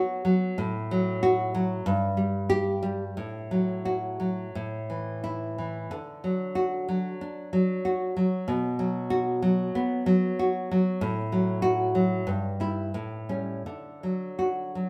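Sunny and warm, this 14.9-second excerpt from a longer romantic piece for solo classical guitar moves in 4/4 with a rubato feel, drifting between 82 and 97 BPM in D major. The fingerpicked nylon-string guitar sits up front with a dark, woody, full-bodied tone from old strings, ranging from G2 to G4 as it moves through B5 and F#m/A shapes before settling through Em/G and A7 onto D at 13.7 seconds. A stone room's reverb, recorded live, adds a lingering 1.4-second tail around the playing.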